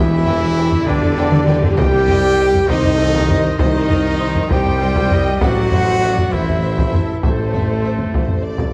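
Set in a straight 6/8 at 66 BPM counted in dotted quarters, this brief passage cut from a longer epic orchestral film score carries a triumphant, heroic mood. A taiko ensemble struck with hard sticks, sounding vintage and band-limited, enters at 0.3 s and is the most forward part, with a drum fill from 1.3 to 1.8 s. The melody sits with a lush, vibrato-rich violin section in the background, joined by an airy flute group with crisp attack playing a second line, while another very quiet violin line and a close, focused viola accompaniment fill the middle. A mellow French horn section and a tight trombone section hold sustained chords, and a bright, distant solo trumpet cuts in with stabs. Underneath, a mellow tuba, a smooth, even cello section and a woody double bass section share the bass as the harmony moves from Em to Cm at 1.8 s and Am at 5.4 s. A moderate scoring-stage reverb wraps the whole in a dark, warm production.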